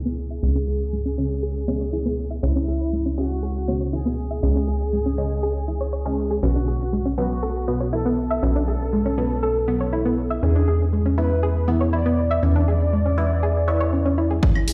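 A tight, punchy sequencer bass sits up front in this dark, cinematic melodic techno excerpt at 120 BPM, pulsing with sidechain pumping under chords that move from C#m to Bm at 6.4 seconds and E at 10.4 seconds, while a soft, round pluck spins arpeggios through chorus, cassette tape and digital delay, shaped by a filter sweep. A brassy, fat analog synth brass carries the melody with vibrato, and a muted, detuned dub chord stab adds evolving stabs colored by phaser and analog chorus, all set in a large studio reverb. The electronic kick drum lands only at 14.4 seconds, followed by layered claves and hi-hat at 14.6 seconds, with a barely audible impact and riser at the opening and close.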